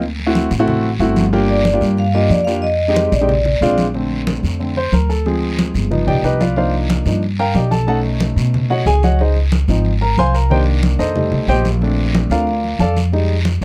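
A sunny, sophisticated Afro-Cuban jazz excerpt at 183 BPM opens with a natural, short-sustained baby grand piano comping and a woody, thumpy gut-string upright bass played pizzicato up front, over bright, thin-skinned congas in the background and a raspy guiro. From 1.5 to 3.7 seconds a ringing, metallic vibraphone, struck with medium hard mallets and its motor off, states a brief melody in a boxy small room. At 3.9 seconds the music settles into Bb major and the warm piano takes a solo over rich jazz changes such as Bbmaj7, Cm11 and Dbmaj9, all captured dry with close, detailed microphones.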